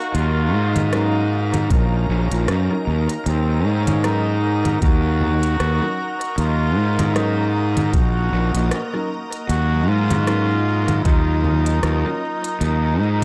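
Over a swung 4/4 groove of congas, crisp hi-hat and rim clicks bathed in dub echo, with a deep electronic kick arriving at 1.7 seconds, this hazy, spacious ambient dub excerpt rests on a single minor seventh chord, where a growly, up-front fuzz bass drives beneath a calm, detuned organ-like pad with ensemble chorus, very quiet mellow vibraphone arpeggios, faint woody upright piano stabs entering at 0.9 seconds, and a nasal, straight-muted solo trombone melody trailing dub echo through a dark production.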